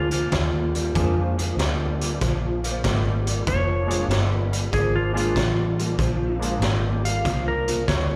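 Electric blues shuffle at 95 BPM in Bb mixolydian, rollicking and swaggering, cut from a longer piece and sitting on a single Bb7 chord as a slide guitar solo runs throughout. A dark, clean lap steel carries the second line with slapback echo and volume swells, over a slightly broken-up, lo-fi riff guitar from a small old amp with ensemble chorus, a round, foam-muted bass up front, and a gritty garage kit with a boomy kick and high-tuned snare. A woody upright piano accompanies in the background until 6.6 s, all heard as a live gig through the venue's PA with recital hall reverb and small room ambience.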